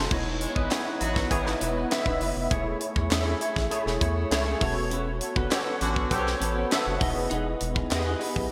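A polished 1980s jazz-funk pop excerpt opens with a distant, roomy horn section playing a jazz-style second line over a bright, barky tine electric piano, a twangy picked guitar riff and a round, deep analog bass. The electric piano sits up front with an ensemble chorus and carries the accompaniment. The clean, compressed guitar shimmers in the background through a lush chorus. A tight funk kit with a high-tuned snare, tight kick, hi-hat and crash cymbal arrives almost at once, its gated reverb giving the groove a snappy, mid-forward bite. Very quiet, hollow group handclaps join at 0.7 seconds, and the horns return at 5.2 seconds. Across the excerpt the harmony moves from C#m9/E through Amaj7/E and E13sus4 to Emaj7. The breezy, upbeat mood is framed by a bright digital production and a lush hall reverb.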